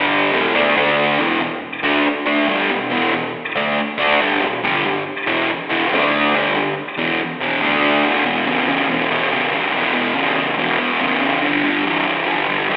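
From its opening moment, a lone fuzz guitar, picked, double-tracked and up front with slapback echo, drives gritty, brooding rock in a straight four, its warm distorted tone moving through E, D and G power chords from 0.3 s to 11.4 s as it rings out under plate reverb and a recital-hall ambience, all heard through a live venue's PA with a thin, telephone-like edge, in a fragment cut from a longer piece.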